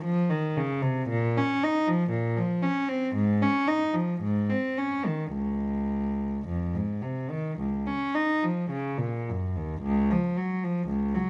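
Classical, baroque-style suite movement for unaccompanied cello in Db major, introspective and grave, moving in 4/4 at a slow 52-60 BPM with a free, rubato feel. A single bowed cello plays alone from 0.0 to 11.3 s, ranging from Db2 to Eb4, its rich gut-string tone reedy and up front in a period style. Close, detailed microphones catch the instrument while a moderate large-studio reverb gives it space; this short passage is cut from a longer piece and shifts into a new section at 9.8 s.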